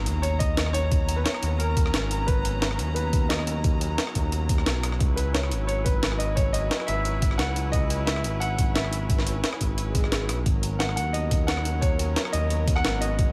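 Liquid drum and bass with a melancholic, dreamy mood, where a dark, mellow grand piano carries the melody through a digital delay over smooth, detuned synth bass with tube saturation, sul tasto chamber strings holding intimate sustained chords with sidechain pumping, a gritty, pitched-up breakbeat kit with a high-tuned snare and a thumpy electronic kick re-recorded in a large room, and background electronic impact and swell effects at 0.0 and 9.9 seconds, all moving between G#m11 and C#m11 in this excerpt from a longer piece.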